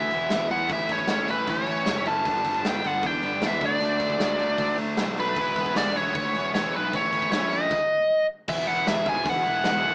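A biting, overdriven lead guitar sits up front with a bright picked melody in this upbeat, energetic punk rock clip at 154 BPM, cut from a longer piece. Beneath it a tight, double-tracked distorted rhythm guitar drives the riff through E, A, G and D, a round fuzz bass holds the low end, and a big acoustic rock kit with a punchy kick, medium-tuned snare, hi-hat and crash plays from 0.1 s. The band sounds live in one room with light reverb and a small-speaker tone, and after the chords briefly drop out at 7.7 s, a new section lands on E at 8.5 s.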